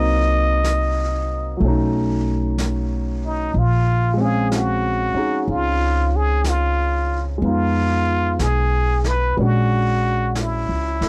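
A slow, swung 4/4 pulse carries this smoky, wistful jazz ballad fragment, where a raspy, growling plunger-muted trumpet with light vibrato and a wah-wah edge sings the melody up front over polished grand piano chords and a woody pizzicato upright bass, while a vintage brush kit with a rolled-off top joins low in the mix at 0.6 s, all captured in a dry, close 1970s-style studio sound.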